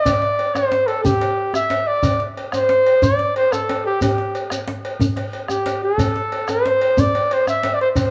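Driving and earthy, this short fragment of a West African drum ensemble piece in a straight 12/8 sets a mellow flugelhorn up front, playing a solo melody in a classical style over the full 8.1 seconds. A deep djembe struck with hard hands, its metal rattles buzzing, sits close and dry beside a grainy shekere, while a round bombo holds the background and a metallic cowbell rings from a distant, large room. A moderate plate reverb and studio ambience frame the ensemble.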